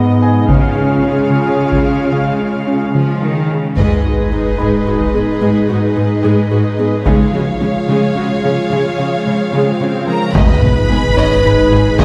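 Solo taiko drums struck with hard sticks drive this brooding, futuristic hybrid orchestral and electronic film cue in G# dorian at 73 BPM in 6/8, over a rich studio viola section, an airy breathy pad with chorus, a harp-like synth pluck with chorus and digital delay arpeggiating in the background, a clear symphonic cello section on bass and a very quiet bright grand piano, while a mellow French horn section sounds at the start and returns near the end, a lush symphonic violin section adds a second line from 3.8 s as electronic sub drops and swells hit, and a very quiet double bass section joins at 10.3 s, followed by a deep sine sub bass and a violin melody at 10.4 s, all set back in a wet concert hall.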